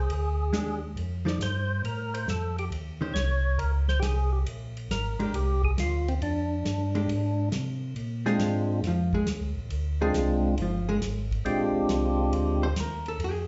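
Heard as a band playing live in one room, with a muffled top end and a soak of large studio reverb, this greasy, swinging soul jazz organ trio excerpt moves at 137 BPM in Bb mixolydian, with a fat, lightly overdriven, percussive tonewheel organ on slow rotary speaker up front carrying the melody, a round, mellow second organ with key click playing the bass, a tight acoustic soul drum kit with dark cymbals and a pumping room supplying the beat, and a clean, compressed, picked hollow-body jazz guitar accompanying before taking a solo from 8.0 seconds.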